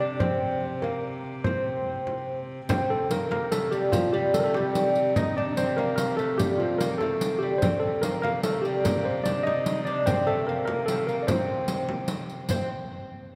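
Driving and ancient, this medieval dance in 6/8 and C dorian moves at 98 BPM and speeds up throughout, with a worn, slightly out-of-tune tine electric piano carrying the melody over a bright, fingerpicked gut-string lute second line touched with dub echo, a pure, floating bowed viola da gamba drone on C3, an acoustic frame drum, and a riq with bright jingles joining at 2.7 seconds, all set in a wet church reverb with a dark, warm production in this piece cut from a longer work.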